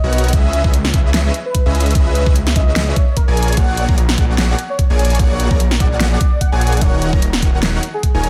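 This bright, lush future bass excerpt opens with a thick, detuned saw bass, huge bright supersaw chords colored by cassette-tape character, a velvety synth lead carrying the melody through chorus and tape echo, and an airy, dreamy lead spinning soft arpeggios in the background with 12-bit sampler grit and delay, all pumping against the sidechain at 148 BPM in a half-time feel with swung 16ths. A dubstep kit with a huge, overdriven snare and hi-hat arrives at 0.1 seconds, and a knocking, overdriven electronic kick sits up front from 0.3 seconds, under chords moving from C#m7 through A#7alt to D#m7. The mix is dry, dense and heavily limited.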